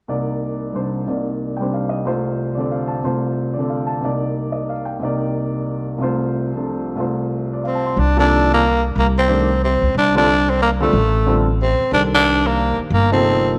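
A warm baby grand piano opens this cool, spiritual modal jazz passage in C dorian, its long-sustained chords swaying between Cm9 and F/C in a swung 3/4 at 182 BPM. At 7.7 seconds a breathy, raspy tenor saxophone takes the solo melody up front, and at 8.0 seconds a woody pizzicato upright bass joins, also up front. All of it sits in a moderate echo chamber reverb, and the passage is cut from a longer piece.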